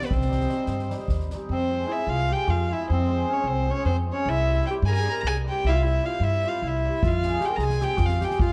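Heard through a dark production and a moderate recital hall reverb, this restless, bittersweet Balkan wedding band piece moves at 304 BPM in eighths in a straight 7/8, in F harmonic minor. An intimate, rich violin sits up front carrying the melody with light vibrato and an airy sul tasto bow, while a distant, roomy clarinet in classical style plays a second line beneath it, a shimmering, ringing cimbalom supplies hammered accompaniment, and a woody, thumpy pizzicato upright bass sits up front with steel-string weight. A soft-mallet drum kit with a fat snare and boomy kick plays only until 1.4 s and returns at 7.0 s, as the harmony moves from C minor to F minor, through C major, and back to F minor.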